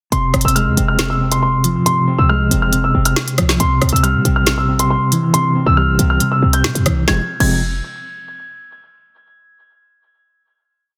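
A dark grand piano carries a looping melody high in its range, mellow and intimate with audible action noise, filtered and touched with delay so it repeats like a sampled loop over this cold, ominous drill track at 138 BPM in a half-time feel. Beneath it, a clean semi-hollow electric guitar plays a patterned arpeggio in eighths with tremolo and a low-pass filter, its hollow-body tone adding a shadowy, looped backdrop. The electronic drum kit sits up front with a woody snare, rim clicks, crash cymbal and crisp skipping hi-hats broken by fast rolls, while a short, punchy 808-style bass delivers long sub-bass notes with pitch slides and a noise layer. The piece is a single hook in F harmonic minor that moves from Fm to C at 3.6 seconds and returns to Fm for a final chord at 7.1 seconds. Light digital ambience surrounds the parts, and the master is dense and heavily limited.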